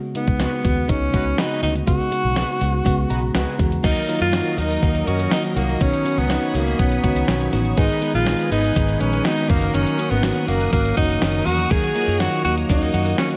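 Romantic and glossy, this 1980s-style pop excerpt moves at 122 BPM in a straight 4/4, cut from a longer piece. A clear, close-miked tenor saxophone carries the melody up front with vibrato and a touch of delay, over a mellow FM electric piano whose fast-attack, decaying chords open the track and add a short fill just before 3.8 seconds. A clean 12-bit drum machine with a thumpy kick, fat snare, hi-hat and crash sits in gated reverb, while a dark, foam-muted fingered electric bass gives a round, punchy low end. Bold sawtooth synth brass stabs, detuned and chorused, hover in the background from the start. At 3.8 seconds the harmony shifts to D#m and a lush string machine enters with slow-attack sustained chords and ensemble chorus, joined by a very quiet, direct-recorded clean guitar riff. Light digital ambience gives the whole mix a polished sheen.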